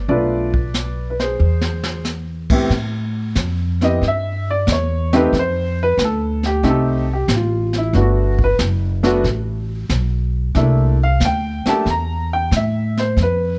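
Sophisticated and swinging, this excerpt of a jazz piano trio moves at 92 BPM in A minor with a relaxed triplet lilt, opening on a Bm7b5 to E turnaround that a brief drum fill marks at 1.4 seconds. From 2.7 seconds the upfront, woody upright piano takes a solo with long sustain and a touch of plate reverb over rich chords such as Gmaj9 and C13, while the pizzicato upright bass sits close with a thumpy, steel-strung tone. Softer in the mix, the brush kit adds a dark, smooth pulse of brushed snare, hi-hat, boomy kick and dark crash cymbal, all captured by close, detailed microphones in a lightly reverberant space.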